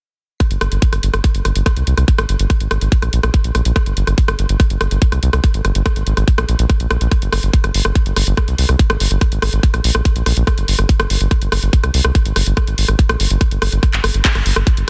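A round, deep analog bass with a sawtooth edge and fast attack sits up front, holding sustained, dark low notes through this alien, driving psychedelic trance passage cut from a longer piece. A tight, layered electronic kick drum punches alongside it, while a produced garage drum kit adds handclaps, hi-hat and rim clicks, with soft clipping roughening the snare. The mix is dry and dense, with a heavily limited modern master.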